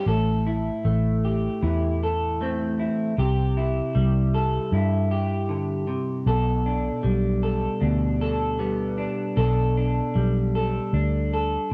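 A bright, twangy electric guitar through a small old amp opens this hopeful, nostalgic folk excerpt with lush chorus and a cassette tape tint, joined at 0.1 s by a dark, round, foam-muted electric bass as the chords move from Am to Cadd9 to Gadd9/B in a light-reverb home cassette recording.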